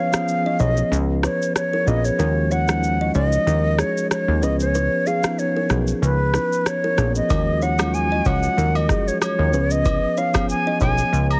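A lightly swung 94 BPM afrobeats groove in 4/4 is carried by a booming analog drum machine with a deep, tape-warm kick, rim click and shaker, and a punchy, funky analog bass with ring modulation and a filter sweep up front. The chords alternate between Db7 and Ebm11 under a sultry, mellow mood: an airy silver concert flute with vibrato and delay leads, a bell-like tine electric piano comps cleanly, and a soft, woody kalimba riff with delay sits in the background. Agogo bells enter at 7.3 s to close out this dry, heavily compressed, radio-like fragment of a longer piece.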